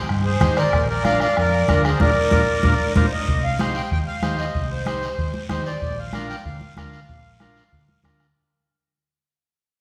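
Cumbia at a brisk 189 BPM in 4/4 with a passionate, fiery mood, built on Cm and Bb, where an up-front, reedy accordion carries the melody over a buzzy, overdriven vintage combo organ, a dark, round hollow-body electric bass, soft-beaten bombo, damped high-tuned congas and a raspy, distant guiro, all bathed in a wet concert-hall reverb with vinyl crackle, as a band accent hits from 2.0 to 3.3 seconds before the fragment fades out through its final stretch.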